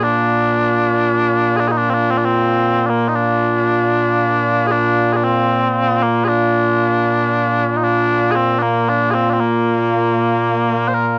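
Scottish traditional pipe music in 6/8 at 77 BPM in Bb major, this proud, ceremonial excerpt features mellow small bagpipes playing solo and up front from 0.0 to 11.2 seconds, their sweet, continuous tone carrying vibrato and a cassette-tape character within a moderate studio ambience of a home recording.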